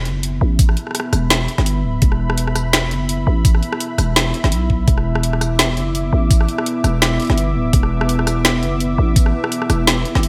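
A half-time groove with a lightly swung feel on the sixteenths drives this dark, heavy drum and bass excerpt cut from a longer piece. The drum kit sits up front, with a woody snare, bright hi-hats, rim clicks and tambourine, all roughened by overdrive and clipped by gated reverb. An overdriven electronic kick with a knocking, layered punch enters at 0.6 seconds, stands as the loudest part, and stops at 9.2 seconds. Underneath, a growling 808-style bass holds the low end from the very start, buzzy and sine-based with a fast attack that decays. A deep, moody analog pad fills in sustained chords from detuned sawtooth and triangle tones over a sub octave, its slow attack and long release softened by chorus and pumped by sidechain. The production is bright and 1980s-flavoured, with light reverb and a digital ambience around the parts.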